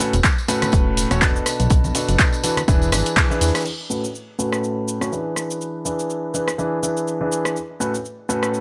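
A swung 123 BPM piano house groove in 4/4 and A major opens with a punchy analog drum machine of handclaps, hi-hat, rim click, shaker and crash and a very quiet open jazz kit. A plucky, funky sawtooth-and-square analog bass and bright, compressed tambourine and congas in the background join a moment later, followed by an up-front, tape-warm electronic kick, and the bass pumps against the kick until about 3.5 seconds. A clear, woody upright piano with audible action noise and long sustain carries the euphoric riff over A69, Bm7 and E7 changes, pumping through a sidechain and trailing digital delay. After a band accent at 3.2 seconds, the kick, bass, percussion and jazz kit drop out, leaving the piano under a filter sweep from 3.7 seconds with the drum machine in a small, lightly reverberant room.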